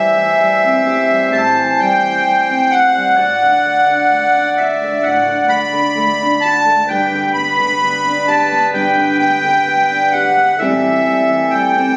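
Acoustic folk in A dorian at a slow 65 BPM, this haunting, reflective fragment of a longer piece sets a reedy, sweet accordion melody up front, its light tremolo tuning shimmering over a full, dry, close-miked tone. Beneath it a clear clarinet plays a classical-style second line, while a fingerpicked steel-string acoustic guitar carries the accompaniment with audible finger squeak, moving from Am7 through D/A and G before returning to Am7 at 10.6 seconds. The sound has the feel of a phone held in a club, with moderate reverb around the trio throughout the 12 seconds.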